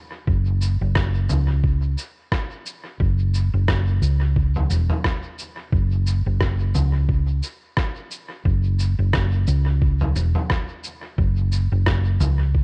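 A dry excerpt of spacious, meditative ambient dub with a lightly swung sixteenth-note feel, built on a dark, round hollow-body electric bass that sits amped and up front over a muffled, thumpy electronic kick and a lo-fi sampler-style kit of cabasa, rim click and toms, both drum parts compressed, pitched down and tape-warm as if re-recorded in a small room, with dub echo trailing the kit.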